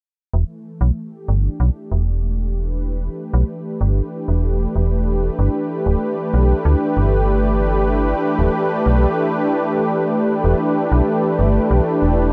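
A straight 4/4 pulse at 95 BPM drives this melancholic, glitchy IDM excerpt in E minor, where an up-front metallic FM bass with fast-attack, decaying notes moves under a filter sweep until 10.4 seconds, while a smooth, detuned sawtooth analog pad with chorus holds slow-blooming chords through Em7 and G before settling back on Em7, all set in light reverb.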